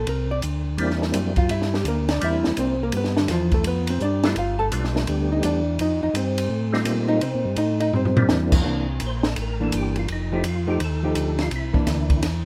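A swinging 4/4 groove at 168 BPM drives this soulful soul jazz organ trio excerpt in C mixolydian, cut from a longer piece, with a compact cocktail drum kit of dry, dark cymbals, high-tuned snare and punchy kick sitting up front beside a smooth tonewheel organ bass line with key click and slow rotary speaker. A dark, hollow-body archtop guitar plays a clean, picked solo from 0.0 to 8.7 seconds, capped by a drum fill, while a mellow, round percussive tonewheel organ carries the melody from 0.8 seconds with third harmonic percussion and chorus vibrato over C9, G9 and F9 chords. The rough home demo mix has light reverb and a small room ambience.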